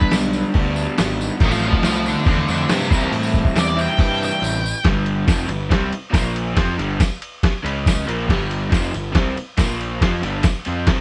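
A dark, fuzz-drenched lead guitar carries the melody up front with picked, distorted octave-fuzz lines over G, F/A and C chords, then stops at 4.9 s. This rowdy, swaggering garage rock excerpt, cut from a longer piece, drives along at 140 BPM in a straight 4/4, with a brief break at 4.4 s before the music shifts into G5, Bb5 and C#5 power chords. A double-tracked, crunchy overdriven guitar grinds out the riff near the front of the mix, backed by a picked electric bass that is fuzzed and overdriven with a warm, amped growl. The lo-fi sampler-style drum kit sounds compressed, pitched down and muffled, with a thumpy kick, medium-tuned snare, hi-hat, ride and crash sitting up front. A jingly, vintage, band-limited tambourine adds acoustic shimmer, and light reverb gives the whole performance the feel of a band playing live in one room.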